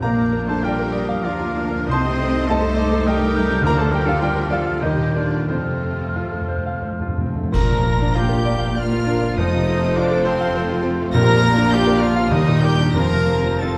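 A clear, up-front grand piano carries the lyrical melody with smooth violins alongside it in this lush, romantic passage for piano and orchestra in Bb major, played in a rubato 3/4 at 84-108 BPM, while airy flute, oboe, bright clarinet and a second, background violin section weave second lines over a very quiet, expressive viola accompaniment, distant French horn chords and a focused cello and double bass foundation, before hard-mallet timpani enter with a fill at 5.5 seconds and bright trumpet stabs join at 7.5 seconds alongside a brief accent from dark clash cymbals and concert bass drum, all set in a dark, wet scoring-stage reverb.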